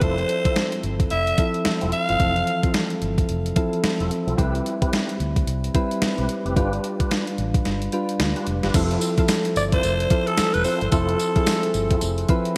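New jack swing R&B with a bouncy, flirty feel, cut from a longer piece, its sixteenths carrying a light swing under a bright 1980s-style digital sheen and a lush hall reverb. A crisp 8-bit drum machine sits up front with a thumpy kick, medium-tuned snare, hi-hat, crash and tambourine, overdriven and wrapped in gated reverb, while the kick drops out from 7.7 to 8.7 seconds. A dark, foam-muted fingered electric bass holds the low end, and soft, detuned electric-piano-like synth keys with chorus supply mellow, decaying chords over Fmaj7, Cmaj7 and G7. In the background, a fat tonewheel organ adds lightly overdriven stabs with key click, chorus vibrato and a slow rotary speaker. A close-miked alto saxophone leads in a jazz style, breathy and raspy with growls, subtone, scooped notes and light vibrato, playing at the opening and returning from 9.6 seconds, after the chords have circled back to Fmaj7.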